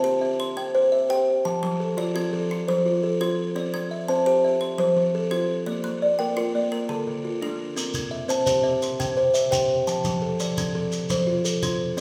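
Rippling and hypnotic, this passage from a longer southern African traditional piece in a straight 12/8 builds an mbira-style interlocking cycle from two kalimbas weaving arpeggios together throughout. Up front, a buzzing kalimba with a solid board sounds mellow, woody and airy under soft fingertip plucks, while a second kalimba with a hollow box rings brighter under its thumbnail. At 7.8 seconds a grainy shekere joins, and a lush recital-hall reverb surrounds the whole performance.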